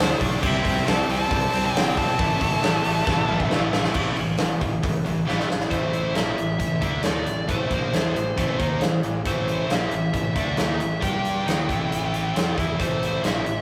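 Menacing and heavy, this hard rock excerpt in A minor drives at 136 BPM in a straight 4/4, with a nasal, parked-wah lead guitar carrying the melody through overdrive and tape echo over a bright, picked overdriven rhythm guitar riff, a scooped high-gain guitar sitting in the background, and a growly fuzz fingered bass, all anchored by a huge, up-front arena drum kit with a punchy kick that breaks into fills at 3.1 and 5.3 seconds, captured as a rough rehearsal-room recording with light reverb and warm saturation.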